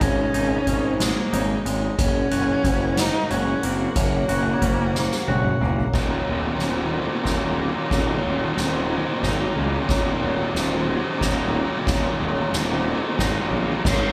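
Post-rock with a melancholic, cinematic mood, this slow 6/8 passage, cut from a longer piece, has the feel of a band playing live in one room with light reverb. A warm, expressive bowed cello carries the melody with vibrato and portamento until 5.6 seconds, over a lush, very quiet string section holding sustained chords. Clean, twangy electric guitar arpeggios sit in the background beside airy, ringing vibraphone arpeggios played with soft mallets and a slow motor vibrato. Underneath, a growly fuzz bass anchors the low end while an up-front drum kit, played with soft mallets, brings a boomy kick and dark cymbals. A drum fill leads into a build-up at 5.9 seconds, where an overdriven picked electric guitar riff enters up front and drives the rest of the passage.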